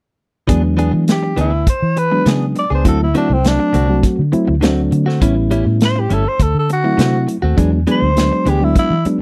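A straight-eighth 4/4 groove at 102 BPM drives this short, rollicking soul blues cut, with a warm, tight-kicked drum kit of hi-hat, kick and snare sounding roomy yet up front, its top end rolled off. A dark, round, foam-muted fingered electric bass sits forward in the mix, while a reedy electric piano heard through its built-in speakers fills in the accompaniment. A bright, clean, direct-recorded electric guitar adds compressed, picked stabs carrying a slapback echo. From 1.1 seconds a growling tenor saxophone takes the solo melody in a gritty jazz style, breathy and raspy with subtone, vibrato and scooped notes, and it also carries a slapback echo. The harmony moves through E7, D7 and A7 before returning to D7 and E7, and the whole take has a dry sound with little reverb.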